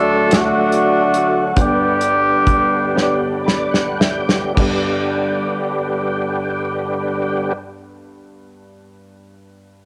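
A tight, distant-sounding horn section carries the melody of this hopeful, jubilant slow gospel piece in 6/8, over a woody, slightly detuned upright piano and a gritty, overdriven tonewheel organ with key click, chorus vibrato and a slow rotary speaker, as the tempo slows through the opening and the harmony moves from D to G. A punchy, up-front country drum kit with a small-room sound enters just after, and drums, piano and organ each play fills from 3.0 s, while the horns stop at 3.4 s. Cassette tape lends a home-recorded character, and plate reverb colours the horns, piano and organ in this section cut from a longer piece.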